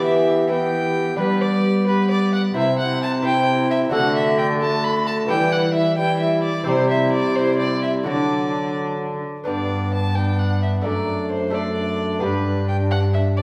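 A rich, gut-stringed violin with light vibrato sits up front on a high second line alongside a reedy, bowed period-style cello carrying the bass, in this stately, courtly classical passage at 87 BPM in a straight 6/8, cut from a longer piece. Behind them, an airy wooden tenor recorder with a crisp, chiffy attack and vibrato carries the melody, while a delicate fingerpicked lute with doubled strings and a mellow bassoon fill out the accompaniment. The harmony moves from E minor through G, C and D before turning toward G at 9.5 s, all set back in a wet recital hall with a 1.3-second reverb tail.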